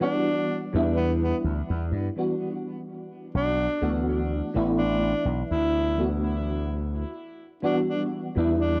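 A dry, gritty cassette sound with light reverb and a faint studio ambience frames this short, dreamy vaporwave fragment at a slow 63 BPM, drifting from Em9 to D6 and back with a gentle sixteenth-note swing. A clear, close-miked alto saxophone carries the melody in a classical style with tape echo, over a soft, round FM electric piano that warbles with tremolo, chorus and tape echo. A punchy, bright slap bass with an envelope filter joins at 0.7 seconds, adding a direct, amped edge to the faded mood.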